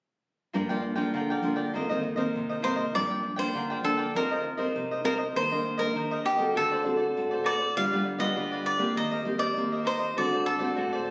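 Samba at 100 BPM in G minor, tuned to A4 = 437 Hz, this bittersweet, nostalgic excerpt sets an up-front, crisp picked cavaquinho against a fingerpicked, classical nylon-string guitar, also up front, over chords moving from Gm7 and F7sus4 toward D7. At 2.6 s a second cavaquinho enters with the melody, its warm, picked tone carrying plate reverb. Captured on a phone in the room, the sound has club reverb, compression and a dulled top end.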